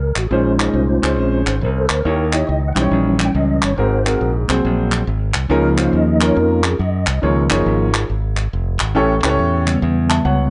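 A mellow, flute-like tonewheel organ with fast rotary speaker and chorus vibrato opens alongside a bright, direct fingered electric bass, joined at 0.2 seconds by crisp group handclaps and at 0.3 seconds by a woody upright piano with long sustain, carrying this reverent, jubilant uptempo gospel excerpt in Db major at 139 BPM with a swung 4/4 feel through Bbm11, Eb7b9, Ab9 and Db69 changes before an A7 arrives at 9.0 seconds, the organ featured throughout within a dark production and moderate large-studio reverb.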